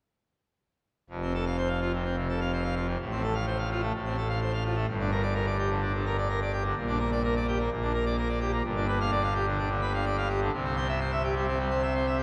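A pipe organ at full registration, bright with mixtures, carries this jubilant classical toccata alone, sounding majestic and up front from 1.1 seconds. Its romantic voicing spans from F1 up to F5, giving the chords a massive, brilliant weight. The harmony moves from F to F/A, then through Gm and Gm/Bb to G7, and it arrives on C as the passage closes at 12.2 seconds. A steady four-beat pulse drives the music forward. The organ rings out into a very wet cathedral reverb with a long decay of 7.3 seconds, so each chord blooms into the stone space and lingers. The passage is cut from a longer piece and leaves the music poised on that final chord.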